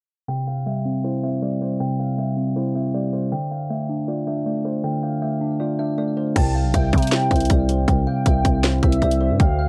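A woody, ringing kalimba melody and a mellow tine electric piano, both low-pass filtered, open this wistful yet triumphant fragment of half-time trap hip hop at 158 BPM in C major under a filter sweep from 0.3 s, until at 6.4 s a velvety, detuned synth lead with chorus and digital delay arrives alongside a growling, buzzy 808-style bass and an overdriven, up-front trap kit of hard-clipped kick, sharp snare, bright hats and crash, all within a dark, dry production.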